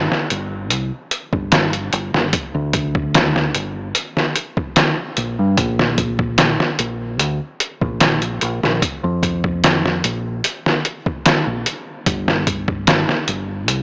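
Heard through worn, warbling cassette tape with a pitch drift, a small-speaker sound and a moderate plate reverb, this cinematic, hypnotic trip hop excerpt is cut from a longer piece. A sampler-style drum kit sits up front from 0.1 seconds, compressed, pitched down and muffled, with a thumpy kick, a medium-tuned snare, hi-hat and studio reverb. Beneath it, a deep dub fingered electric bass plays from the start in a low register, dark, round and punchy.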